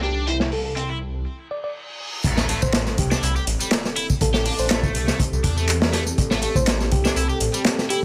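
Heard through a small, lightly reverberant room and a low-pass filter, this raw, gritty breakbeat fragment puts a crunchy, saturated acoustic kit up front, with a punchy kick and dark cymbals, beside a thick, swirling phased saw bass. An overdriven, double-tracked stack guitar riff and a sparkling, bell-like FM electric piano melody with chorus and delay ride over a deep, moody analog pad that pumps quietly in the background as the harmony moves from C to Am7. A filter sweep and a brief break carry a reverse cymbal and sub drop, starting at 1.5 seconds, into the drop at 2.2 seconds, where a tape-coloured analog drum machine adds handclaps, ride cymbal and tambourine.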